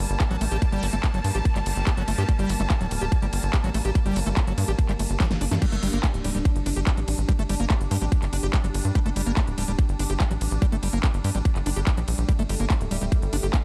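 A straight pulse from an up-front electronic kick and a big-room dance kit with a huge snare, crisp hats, handclaps, ride and crash anchors this hypnotic, psychedelic trance excerpt, where a punchy, nasal sequencer bass and a squelchy, resonant acid riff with chorus, tape echo and sidechain pumping ride over a bubbling, detuned stepped-filter pad in the background, while a rich bowed string section holds a single high note until 5.6 seconds, when a drum fill and band accent launch the repeat of the drop, all in a dark, dry mix.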